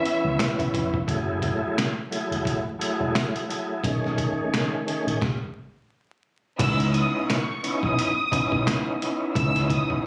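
Heard through a phone in the room with light studio reverb and vinyl crackle, this dark, reflective boom-bap hip-hop fragment moves at 87 BPM in C# minor with a swung 16th feel. A gritty, overdriven tonewheel organ with fast rotary speaker and chorus vibrato sits up front over a compressed, pitched-down sampler-style drum kit with a thumpy kick, while a round, punchy dub bass anchors chords moving from C#m7 through F#m9 and B13. A lush bowed violin section, filtered and treated with tape echo, appears briefly at the start and returns at 6.6 seconds after a break and a stop, carrying an expressive melody to the close.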